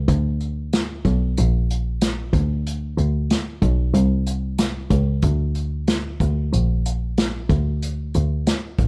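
A straight 4/4 pulse at 93 BPM drives this dusty, wistful fragment of folk rock and heartland rock, tuned to A4 = 441 Hz. A single bowed double bass, rich and smooth with vibrato, holds a close, even low line between A1 and D2 from the opening. An acoustic drum kit joins at 0.1 s, its punchy kick, medium-tuned snare and hi-hat played with bundle sticks in a roomy studio space, all with little reverb.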